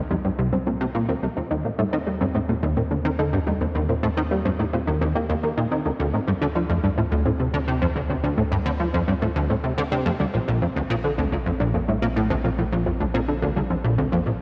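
A dreamy, reverb-soaked mix in a lush hall carries this hypnotic, cosmic stretch of sequencer-driven ambient space music at 107 BPM, where a punchy, funky, detuned analog bass riff sits up front with ensemble chorus, cassette tape and tape echo, a soft, nasal pluck plays gentle arpeggios with chorus and tape echo in the background, and a deep sine sub bass sustains underneath as the chords move from C7(no3) through Eb and Dm7 to Bb.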